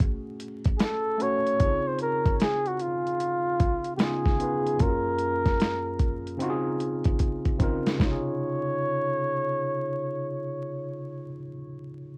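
Lo-fi hip hop at 75 BPM, dreamy and cosy with a swung feel in Db major and cut from a longer piece: a worn, slightly out-of-tune tine electric piano, softened by cassette tape and a low-pass filter, moves from Gbmadd9 to Dbmaj7 beneath a mellow, breathy jazz flugelhorn solo with light vibrato and analog delay that enters at 0.8 seconds, while a gritty, compressed sampler-style soul drum kit with a thumpy kick and overdrive plays a fill before dropping out at 8.2 seconds, with vinyl crackle and light reverb throughout.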